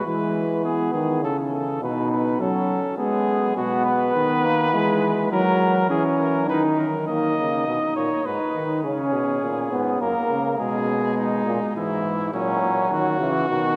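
A warm cornet with light vibrato carries the melody up front in this stately yet lively classical brass canzona in E major, moving at 103 BPM in 3/4 until it stops at 10.6 s, when a mellow trumpet with its own light vibrato takes up the second line to the close. Throughout, a clear, distant trombone provides roomy accompaniment while a clear euphonium anchors the bass, all set in the long wash of a cathedral reverb. This section is cut from a longer piece.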